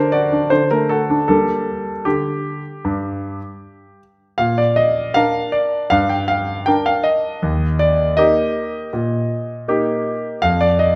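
A clear, vintage-toned grand piano sits up front with a smooth, short-sustained sound, playing alone through this dramatic, restless classical-period sonatina fragment at 79 BPM in 4/4, turning from G minor to Bb major at 4.4 s over chords that pass through Gm, Eb and F5, set in the wet reverb of a recital hall.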